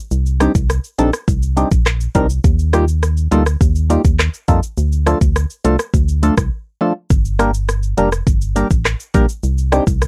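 A straight 4/4 dancehall groove at 103 BPM drives this tough, sultry piece in G minor, cut from a longer track. An up-front electronic afro-pop drum kit of deep kick drum, warm hi-hat, handclaps, rim click and shaker runs from 0.1 s to the end. A close, dry tube shaker and timbales, played with hard hands, sit in the background. A dark, organ-like FM bass with a fast attack and decaying notes carries transformer saturation beneath a mellow, hollow organ stab that enters at 0.4 s, colored by chorus and phaser, wave-folded, and layered with a touch of noise. The chords move from Cmadd9 to Ebadd9, Dm and Gm, with a brief break at 6.5 s. The whole recording is dry, with a worn, warbling cassette-tape pitch drift.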